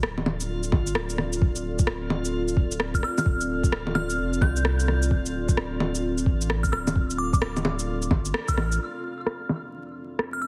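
Future garage fragment, wistful and melancholic, with a swung groove: a moody, detuned sawtooth pad pumps under sidechain alongside a round sine sub bass, while an overdriven, muffled thumpy kick, up-front electronic rim click, bongos and shaker, and a dreamy reversed granular swell support a crystalline FM bell that enters at 2.9 seconds with chorus and tape echo; the band hits an accent at 8.3 seconds, and the whole mix has a heavily compressed radio sound, vinyl crackle and lush hall reverb.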